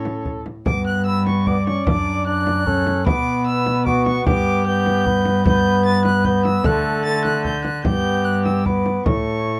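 Stately and courtly, this short excerpt from a longer piece is a renaissance-style consort dance in 3/4 at 150 BPM, moving with a straight, even feel. A single bowed violin carries the melody high above the ensemble, its rich gut-string tone touched with light vibrato and a reedy period colour. Beneath it, a mellow cor anglais sings a present second line with its own gentle vibrato, while a clear trombone supplies accompaniment from a more distant, roomy position. A bowed cello sits up front on the bass, its gut strings giving a warm grain, and a deep, large frame drum played close adds percussion from 0.1 to 9.2 seconds. The harmony moves through G, D/F#, B minor, G, D and G before returning to A, all set in light reverb within a dark production.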